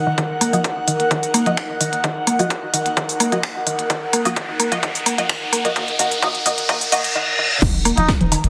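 A straight 4/4 pulse from an overdriven, punchy electronic kick and an up-front click kit of clicky hi-hats, finger snaps and crash cymbal drives this sparse, clinical minimal techno build-up, cut from a longer piece. Over it, an airy, breathy pad and a woody, round FM mallet-like pluck riff pump with sidechain, a detuned sawtooth dub chord stab drifts through phaser and tape echo under a filter sweep, and a riser from 2.3 s leads into a reverse cymbal. At 7.6 s a deep sine sub bass arrives with a dark brush kit of hi-hat and snare in the background, a cup-muted trumpet adds a brief, veiled note with tape echo, and overdriven congas and woodblock close the passage in a dense, heavily limited mix with a wet studio reverb.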